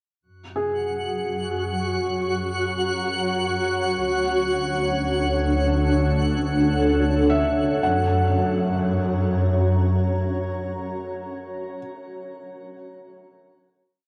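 Drenched in a huge, dark reverb, this short ambient piece floats in free time in F# major, peaceful and weightless. A bowed double bass section fades in at the start, clear and focused with a close studio presence and vibrato, sustaining the root beneath the harmony. A cloudy, blurred granular pad, full-bodied and detuned with a slow attack, carries the shifting chords from F# to Dmaj7 at 4.0 seconds and back to F# for the final chord at 7.8 seconds, its shimmer reverb trailing off on a long release. Above it, a twinkling granular texture adds a sparkling, octave-up shimmer on a held high note before falling away at 7.8 seconds. A soft, felt-muted upright piano scatters mellow, intimate arpeggio notes through a diffuse ambient delay, lingering alone until the piece closes at 14.1 seconds.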